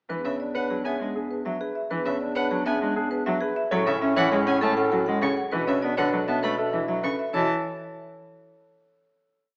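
From the opening instant a complete minimalist classical piece unfolds at 199 BPM in 6/4. A marimba struck with medium hard mallets repeats a short melodic cell, a deep-toned grand piano and a focused, bowed solo violin circle in arpeggio patterns, and a rich, smooth cello with vibrato restates its own accompanying cell. A mellow clarinet adds pulsing second-line notes that swell and fade, and a clear, roomy bass clarinet holds long bass tones. All of this moves hypnotically and urgently through E13, Amaj7 and Bm9 before the clarinet stops at 7.1 seconds and the others at 7.5 seconds, within a moderate scoring-stage reverb and a small-speaker sound.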